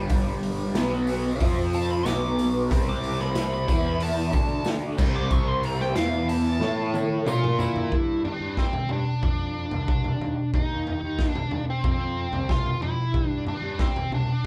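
Trippy and kaleidoscopic, this psychedelic rock piece rolls at 92 BPM in a straight 4/4. A mellow, very quiet tonewheel organ with slow rotary sway holds sustained chords, a biting, double-tracked overdriven guitar plays a phaser-tinted riff up front, a round fuzz bass pushes underneath, a jingly tambourine sits close and low, and a gritty, saturated garage drum kit with a punchy kick pumps in its small room. A dark, wah-inflected fuzz lead guitar enters at 1.7 s to solo, the drums fill from 6.6 s, and at 7.9 s the organ, riff guitar and tambourine drop away, leaving the lead guitar, bass and drums in a large, live-sounding studio reverb.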